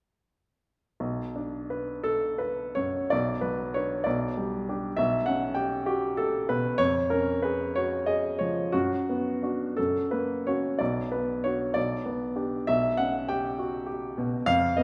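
A clear, polished baby grand piano plays alone from 1.0 to 14.8 seconds in this stormy, bittersweet romantic character piece, its up-front, short-sustained tone ranging from deep bass to the upper treble in a compound metre with free rubato, while a wet recital hall reverb surrounds it as the harmony drifts through shadowed shifts before settling back toward its minor home in this fragment cut from a longer work.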